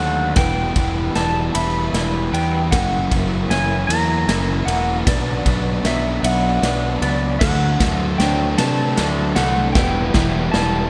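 A bright, clean lap steel sings a slide melody with volume swells and delay over very quiet, smooth bowed strings, a muted felt piano with audible action noise, a twangy clean guitar arpeggio, a growly fuzz bass and a crunchy overdriven guitar riff, all heard from the start. A punchy big rock drum kit with bright cymbals enters at 0.4 seconds, building through Em, F#7, Bm and D at a slow 51 BPM in 6/8. A second crunchy guitar joins in the background at 7.4 seconds, and the whole brooding, melancholic post-rock passage is soaked in dreamy church reverb.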